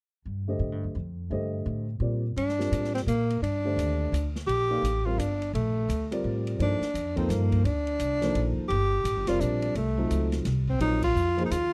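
A swung 3/4 pulse at 171 BPM drives this cool, intense modal jazz excerpt in G minor, cut from a longer piece and recorded in a dry, close 1970s-style studio with light reverb. Upright bass opens it at 0.3 seconds over a Gm9 chord, with a dark baby grand piano entering at 0.5 seconds; the woody pizzicato bass sits up front on steel strings while the worn, vintage piano comps with audible action noise. At 2.4 seconds a breathy tenor saxophone takes the melody as soloist, mellow and subtoned with light vibrato and scooped notes, joined by an open jazz drum kit of ride, hi-hat, snare, boomy kick and crash with dark cymbals that sit airy and low in the mix. The harmony moves to F7b9 and then Bbm9, and the band hits a shared accent at 11.0 seconds before the passage breaks off.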